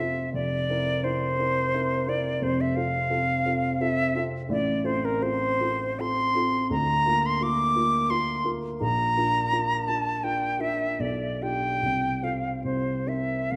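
A recital hall's lush reverb surrounds this close, intimate passage from a longer romantic classical duo, serene and tender in its unhurried, rubato triple time. Up front, the concert flute carries the melody with an airy, expressive tone, soft attacks and gentle vibrato, while the grand piano's dark, mellow accompaniment supports it from low in the bass. Both parts play together throughout the 13.6 seconds, the harmony settling toward a dominant chord at the close.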